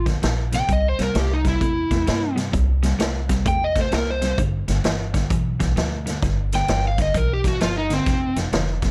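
Soulful and swaggering, this electric blues shuffle rolls along at 130 BPM in 4/4 with a 65% swing on the eighths, set in C mixolydian. An overdriven slide guitar, played with fingerpicks, carries the melody up front, its warm tone bathed in plate reverb and reaching from C4 to G5 before stopping at 8.4 seconds. Beneath it, a dark, slightly broken-up electric guitar picks out a low riff with a touch of spring reverb, sitting a little further back in the mix. A woody yet bright pizzicato upright bass on steel strings anchors the low end, while a vintage drum kit enters at 0.1 seconds with a punchy kick, a medium-tuned snare and hi-hat, its rolled-off top giving a mid-forward, up-front studio-room sound. The harmony moves from F7 through C7 and G7 to a closing F5 at 8.1 seconds, in this short cut from a longer piece wrapped in light reverb.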